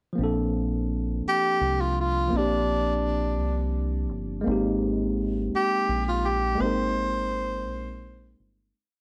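Sensual and warm, this brief slow R&B piece in 6/8 at 56 BPM in Bb major sets a worn, slightly out-of-tune tine electric piano holding rootless chords (shifting from Bbmaj9 to Abmaj7 at 4.5 seconds) over a dark, round fingered dub bass with sliding lines, muted ghost notes and chromatic approach notes, while a breathy, close-miked tenor saxophone enters at 1.3 seconds with scooped, jazz-style call phrases, all bathed in echo-chamber reverb and the warbling pitch drift of old cassette tape before fading out from 6.6 seconds.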